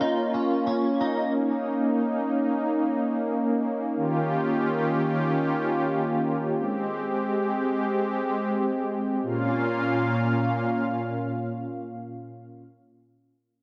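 Drifting in free time, this haunting, melancholic dream pop fragment in Bb dorian is cut from a longer piece and moves through Bbm, Eb7 and Abmaj7 before returning to Bbm at 9.2 seconds. A smooth, detuned sawtooth analog pad sits up front with soft-attack sustained chords, colored by chorus and tremolo, while a bright, twangy clean electric guitar picks compressed, scooped arpeggios through ensemble chorus and tape echo, stopping at 1.3 seconds. A lush hall reverb bathes the sound in a wet, lingering space.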